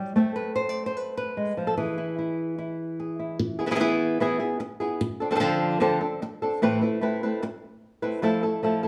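A straight 4/4 pulse at 149 BPM drives this fiery, intense flamenco fragment in E phrygian dominant, cut from a longer piece, where a lone fingerpicked acoustic flamenco guitar, warm and up front with audible finger squeak, moves through Amadd9, E, Dm7 and Fmaj7 over 8.9 seconds, ringing in a moderate, large studio reverb.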